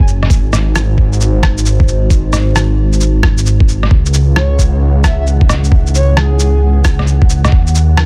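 A menacing, detuned saw bass swells up front with sidechain pumping over an overdriven, muffled thumpy kick and a pitched-down shaker and rim click in this melancholic, nocturnal future garage fragment in C# minor at 133 BPM with a swung 16th feel, while a deep, moody analog pad with chorus and phaser sits in the background and a breathy, warbling flute-like lead with tape echo enters at 4.4 seconds, joined at 4.6 seconds by a flickering, grainy granular texture, all in a dense, heavily limited modern master.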